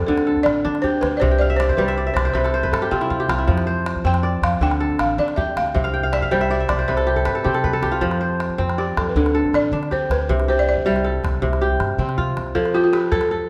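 A lilting 12/8 pulse at 106 dotted-quarter beats per minute carries this joyful, flowing slice of West African string and xylophone music, cut from a longer piece and set in F lydian. A buzzing, woody balafon struck with soft rubber mallets carries the melody in a dry, airy tone, while an up-front kora spins fingerpicked arpeggios that sound crisp and ringing, stepping forward with fills from 1.3 to 3.5 seconds and again from 5.8 to 8.0 seconds. Underneath, a pizzicato upright bass on steel strings adds a thumpy, warm foundation until 12.5 seconds, and a deep calabash keeps time with a live-room feel a little lower in the mix. The harmony circles through D5, C5 and F5 before settling on F at 12.6 seconds. A wet recital-hall reverb wraps the ensemble in a generous, glowing space.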